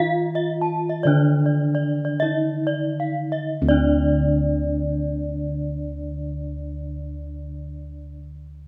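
In a straight four-beat metre, this Balinese gamelan passage eases into a slowing pulse across its opening 3.5 seconds before settling into a second section for the rest of the fragment, which is cut from a longer piece. The mood is hypnotic and shimmering. A bronze metallophone struck with a wooden mallet carries the melody with a dark tone, its paired tuning producing gently beating tones that ring smoothly. A second bronze metallophone, played with a horn mallet and placed up front, spins arpeggios higher up, its metallic sheen adding sparkle above the tune. Bossed gongs anchor the bass with round, pulsing strokes whose band-limited, vintage character sits close and prominent in the mix. A moderate recital-hall reverb lets the bronze resonances bloom and hang in the air.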